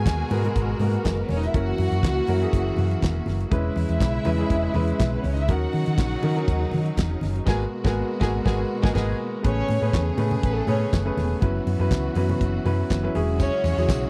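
A dry, close 1970s-style studio sound frames this driving, glamorous disco cut in G# minor at 122 BPM, where a damped 70s drum kit with a fat snare, tight kick, dark cymbals and handclaps sits up front beside a round, punchy hollow-body fingered electric bass and very quiet, saturated congas. A clear baby grand piano with audible action noise supplies intimate accompaniment, while a lush studio violin section carries a second line over sustained, focused chords from a symphonic string section, moving from G#m9 through F#7, E6 and D#m7. The band hits an accent from 7.5 to 9.4 seconds before the harmony lifts to Amaj9, and a jingly, band-limited tambourine slips in at 13.4 seconds.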